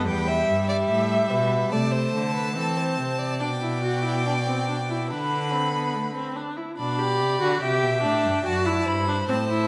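Heard in a reverberant recital hall, this cut from a longer baroque-style string quartet fugue in G major moves at a stately yet lively 72 BPM in 4/4, with a distant, focused first violin carrying the melody above a close second violin line, an even, smooth viola holding the accompaniment up front, and a rich cello anchoring the bass, all four bowed with vibrato through chords such as Em, Am/C and G/B before a new section begins at 6.8 seconds.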